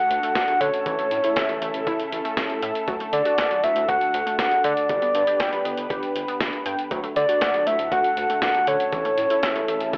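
A wistful yet bright slice of synth-pop, cut from a longer piece, moving at an easy straight pace in four. Up front sits a soft, octave-layered lead with a round, full tone and gentle vibrato, singing its melody over a lush, thick unison pad whose slow-attack chords hold the harmony. A warbly, dusty pluck with a nasal, lo-fi character spins arpeggios through chorus and analog delay, while a deep, round analog bass anchors the low end. A breakbeat sampler-style kit brings a thumpy kick, a medium-tuned snare and hi-hat, all compressed and gritty as if re-recorded in a small room. The whole recording has a dry, hardware-worn, telephone-like quality wrapped in digital ambience, with the chords cycling through D, A and G.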